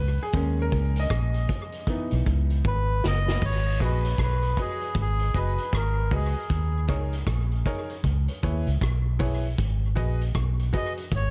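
An echo-heavy small-room mix with a dulled top end carries this laid-back, meditative roots reggae passage at 78 BPM in G# minor, where a bright, woody upright piano with audible action noise plays stabs and takes a solo turn at the start over a round, foam-muted vintage electric bass sitting up front, a saturated, gritty vintage drum kit with dark cymbals and a tight kick plays a fill from 2.6 s, and a reedy, breathy melodica soaked in dub echo carries the melody from 2.7 s over chords cycling through D#7sus4, C#m7 and G#m7.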